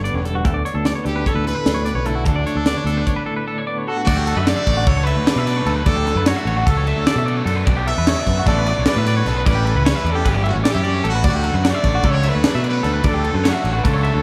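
Bright and intricate, this math rock and midwest emo excerpt in 9/8 opens with a clean, tremolo-treated twelve-string electric guitar, twangy picked arpeggios, a growling overdriven fingered bass sitting up front, and a crisp, delay-treated fusion kit with a high-tuned snare and punchy kick; a distant, forceful trumpet with light vibrato carries the melody from 1.1 seconds, and after a short break a cranked, double-tracked stack guitar riff takes over from the twelve-string at 4.1 seconds, tucked into the background of an echo-heavy, lightly reverberant mix.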